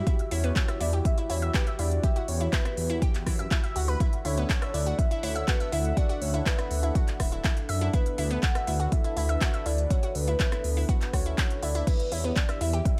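A dry cut from a driving, dreamy progressive house track, where a deep, up-front electronic kick and a deep house kit of smooth hi-hats, handclaps, rim clicks and crash cymbal sit over a rumbling, saturated detuned saw bass, while a round analog pluck spins arpeggios through chorus and dub echo, a smooth pad holds sustained chords in the background, both pumping to the sidechain like the bass, and a soft octave-layered synth lead sings a vibrato-tinged melody through phaser and delay as the harmony moves from Emadd9 to Dadd9 at 4.0 seconds.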